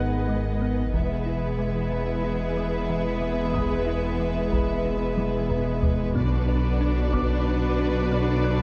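Relentless and tense, this 92 BPM hybrid orchestral-electronic film cue, cut from a longer piece, layers lush bowed violins with vibrato, expressive viola with portamento, smooth cellos and woody double basses over a deep, clean sine sub bass, background trombone chords, a hollow, flute-like pad, a round, tine-like thumb-piano-style synth pluck arpeggiating quietly and faint high grand piano, while close, dry taiko drums with heavy sticks enter at 0.9 s, play a fill from 5.2 s and stop at 7.7 s, all moving from G#m through E to Bm in a dark production with moderate scoring-stage reverb.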